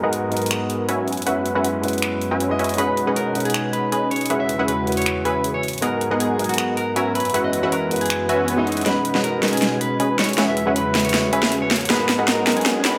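Euphoric and playful, this half-time future bass cut in B major at 158 BPM pairs an intimate grand piano with dub echo, a breathy chorused pad, a punchy detuned supersaw stab riff under a filter sweep, and a huge-snared dance kit with metallic hats and finger snaps, while a dark, slightly broken-up electric guitar carries the melody from 2.8 s and a very quiet swell and riser join at 8.2 s ahead of the drum fill and build-up from 8.9 s, all in a lush hall reverb.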